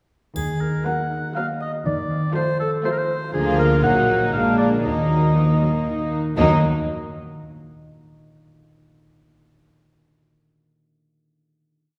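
This whimsical, mischievous film cue in Eb minor opens at 0.4 s with a woody marimba playing the tune on rosewood bars, joined by a solo oboe with light vibrato carrying a second line in classical style. Beneath them, a mellow concert harp fingerpicks ringing broken chords, bowed cellos with vibrato and dark double basses hold a sustained, intimate bass, and a triangle adds a few bright strokes. From 0.9 s the string sections enter: clear, floating violins on the melody, softer second violins and shadowy violas in the background, all playing sul tasto with pizzicato touches and sustained chords that follow the rhythm of the tune. The piece moves in a sneaky, straight 3/4 at 120 BPM through a short minor progression before settling on a final chord, where the harp rings on alone until 7.9 s. A reverberant concert hall places the ensemble further back in the room, giving this complete little piece a soft, spacious glow.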